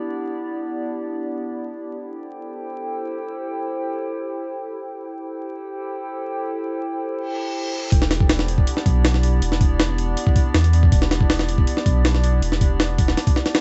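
Crackling with vinyl noise and dulled at the top end, this nostalgic, atmospheric drum and bass excerpt opens on a warbling, detuned lo-fi pad with chorus and its own reverb holding Em7 and Am7 chords, until a reverse cymbal at 7.3 seconds leads into a drop at 7.9 seconds, where a deep, thick saturated sub bass and a gritty, pitched-up jungle sampler-style drum kit with a thumpy kick, medium-tuned snare, hi-hat and small-room ambience burst in up front.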